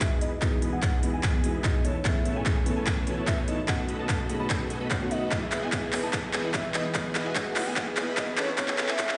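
A euphoric, bright future bass build-up in E major at 147 BPM with a half-time feel opens on a punchy electronic kick, a crisp, up-front dance kit of handclaps and hi-hat rolling through a drum fill, and a huge, thick supersaw riff under a filter sweep, while a round, octave-layered synth lead carries the melody in the background over a breathy pad and a felt-muted, boxy upright piano. At 5.3 seconds the piano drops out as a ringing, thumb-plucked concert harp takes up arpeggios, and a faint riser creeps in at 7.1 seconds as the drum fill keeps running. The pumping lead, riff, piano and harp sit in a moderate room reverb, and the whole is heard as if played through a big sound system in a bare stone room, with the top end rolled off above 10.3 kHz.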